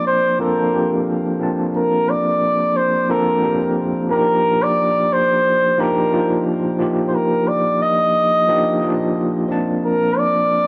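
Relaxed and smooth, this chillout excerpt drifts along at an easy swung pace in 4/4. A mellow flugelhorn carries the melody from 0.0 seconds, its punchy yet distant, roomy tone set up front in a classical solo style and trailed by digital delay. Beneath it, an overdriven tine electric piano plays the accompaniment through a combo amp, gritty and pulsing with fast tremolo, shaped by a low-pass filter with a filter sweep and its own digital delay. The harmony moves from Bbmaj7 to Ebmaj9 at 4.1 seconds before settling back on Bbmaj7 at 9.5 seconds. A lush hall reverb with a long 2.8-second tail wraps the sound, giving this short section, cut from a longer piece, a spacious glow.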